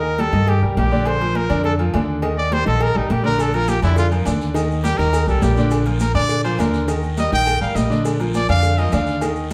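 A roomy, reverberant mix places the band a little back in the space, though the trumpet and upright bass sit up front. This is a joyful, danceable salsa clip cut from a longer piece, moving at a brisk, straight four-beat pulse over chords that alternate between Eb and Bb. The bright trumpet carries a solo melody with vibrato, a smooth top and a slapback echo, while the brilliant grand piano accompanies with an intimate feel, long sustain and audible action noise. Beneath them the pizzicato upright bass gives a woody, steel-strung foundation. Congas with a thick, high-tuned skin sit in the background from the start, joined a moment later by a tight cowbell and ringing metal-shelled timbales and agogo bells, and a raspy guiro and grainy maracas join very quietly at 3.4 seconds.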